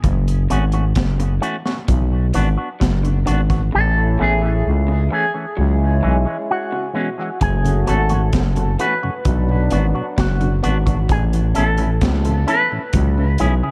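Hypnotic and deep, this 65 BPM dub reggae excerpt in F# minor rides a growling FM bass and a crunchy, saturated breakbeat kit under quiet lo-fi guitar arpeggios and dark envelope-filtered guitar chords with dub echo, before a twangy envelope-filtered guitar melody with tremolo and a cup-muted trombone section enter at 3.7 seconds and a mellow tonewheel organ with slow rotary joins at 7.6 seconds, all in a dark production with light studio reverb.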